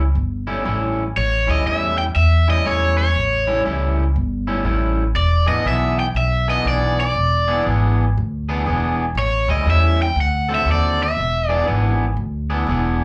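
A swung 4/4 shuffle at 120 BPM drives this swaggering, rollicking electric blues excerpt in A mixolydian, where a twangy, slightly broken-up electric guitar riff with slapback echo and a woody, thumpy pizzicato upright bass play through A7, E7 and D7 changes, while a bright, compressed, overdriven lead guitar with plate reverb and slapback echo carries the melody from 1.2 to 11.7 seconds, the live performance captured through the club's PA with light reverb.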